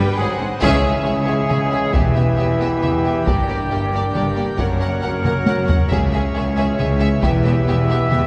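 Moving in a straight 3/4 at 136 BPM, this dark, dramatic orchestral film-score excerpt in C# dorian opens on a G#7 and moves through C#m, Em, Gm and F#, with a taiko ensemble entering at 0.6 s on a band accent, played with heavy sticks, close and dry, and a drum fill arriving at 5.2 s. Two violin sections carry the melody and a second line with focused vibrato and a smooth top, over very quiet violas gliding with expressive portamento, a lush cello section and woody double basses anchoring the bass. Distant, roomy brass adds weight, with dark trombones and mellow, soft-attack French horns holding chords, a solo trumpet punctuating with stabs, and a nasal pipe organ cornet stop with chiff and tremulant sustaining chords, all inside a church reverb with a faint mains hum.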